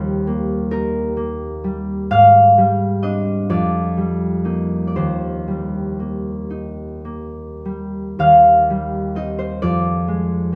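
A concert harp plays alone, its bright, ringing tone thumb-plucked and set up front, spanning from Eb2 to F5 in a graceful, serene classical piece cut from a longer work. The 6/8 metre moves with a free, rubato feel through lush extended chords such as Abmaj7#11 and F9sus4, returning to Eb6 around 5.0 seconds before settling on Fm11 at 9.6 seconds. Close, detailed miking and little reverb give every plucked string an intimate clarity.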